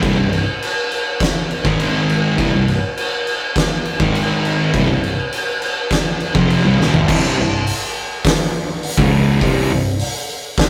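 Stoner and doom metal at 102 BPM in C phrygian, this hypnotic, sludgy cut from a longer piece sets a bright, double-tracked overdriven guitar and two thick fuzz guitars grinding out low riffs over power chords on C and Ab, with a rich bowed cello carrying the bass line, its focused tone and smooth top coloured by vibrato and overdrive. An oversized, low-tuned acoustic drum kit sits up front with a punchy kick, fat snare, crashes, hi-hat and toms, saturated and gritty in a pumping stone room, and a fill at 6.8 seconds leads into a new section at 7.1 seconds, where one fuzz guitar drops out. The rough rehearsal-room sound carries tube saturation and moderate reverb.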